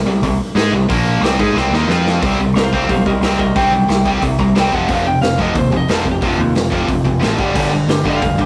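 An up-front, overdriven electric guitar drives this angry, aggressive punk rock passage, cut from a longer piece, as it riffs at 180 BPM in C minor. A tighter distorted guitar plays the riff further back, and a growling, overdriven picked bass sits underneath. A raw garage drum kit, gritty and saturated in a pumping stone room with a punchy kick, comes in at 0.2 seconds and plays a fill at 1.6 seconds before the chords move through C5, F5 and G5. From 2.6 seconds a slightly broken-up, compressed lead guitar takes a solo over the top, all heard as a rough rehearsal-room recording with light reverb.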